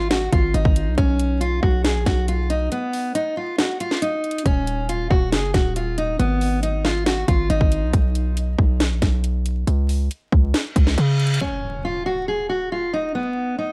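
A digital ambience steeped in vinyl crackle frames this dark, hard-hitting half-time trap cut, taken from a longer piece, where a full-bodied, fingerpicked steel-string acoustic guitar carries the melody through tape echo, with a break from 2.7 s. Up front beside it, a punchy sine-based 808 bass with a noisy edge and fast, decaying attack drives alongside an electronic kit of hard-clipped kick, sharp snare and metallic hats. A reverse cymbal rises from 10.7 s into an impact at 11.4 s, where the drums and bass drop away and the guitar returns as the impact rings out.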